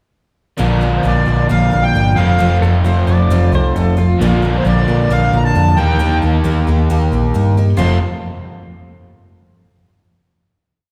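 A shimmering, octave-doubled twelve-string acoustic strum, a crunchy double-tracked overdriven guitar ringing out chords and a round, dark hollow-body bass driving eighth notes up front open this short, hopeful open-road rock piece at 0.6 s; a reedy accordion enters at 1.0 s with hook phrases, while a clean, compressed pedal steel adds slide blues licks and volume swells from 2.6 s to 4.5 s before returning on the final chord at 7.8 s, all in the wash of a wet concert-hall reverb.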